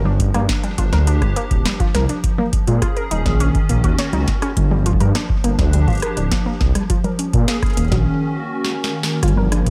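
A straight 4/4 groove drives this glitchy, intricate IDM excerpt: a deep, tape-warm electronic kick sits under a booming analog drum machine of congas, metallic hats, rim clicks and a crisp snare soaked in tape echo, with a break at 8.1 seconds and a drum fill at 8.6 seconds. Up front, a rumbling, saturated detuned saw bass carries the low end, while a hollow, flute-like pad holds sustained chords through ensemble chorus, moving through Gm7, Bbm7 and Ebm7. Over the top, a dusty, lo-fi pluck spins warbling ring-modulated arpeggios through chorus and delay, all in a dry mix.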